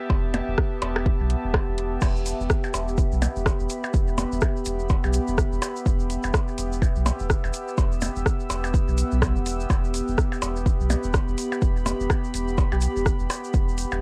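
A swung 4/4 groove at 125 BPM, with its 16ths pushed to 58% swing, drives this cool, clinical stretch of minimal techno in E minor, cut from a longer piece and resting on a single E minor chord. Up front sits a punchy, layered electronic kick, joined by a house kit of metallic hi-hats, rim clicks and crash cymbal, and by produced percussion blips re-recorded in a small room and treated with tape echo. A grainy, mellow tube shaker, close and dry, enters at 2.0 seconds. Beneath them a deep, thick, saturated sub bass pumps to the sidechain, while a warbling, nostalgic, lo-fi pad built from detuned sawtooth and triangle tones swells in slowly with a long release, its chorus and built-in reverb also pumping. An airy, dreamy sine lead with vibrato and a noise layer touches a single G4 in the background at 5.0 and 12.7 seconds, chorused and echoed on tape. The kick, drum kit, blips, pad and lead all carry cassette tape grit, and the piece has the intimate character of a home cassette recording with little reverb.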